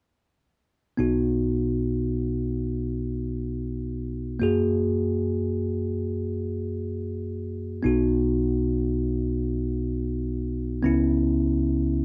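A bell-like tine electric piano, bright and clean and sitting up front, plays alone from 1.0 to 12.0 seconds in this heartfelt, tender pop excerpt, moving through B, F#add9, back to B and then C#m7. Its accompaniment spans from the low register up into the middle, set in a dry, close 1970s-style studio sound touched with light reverb.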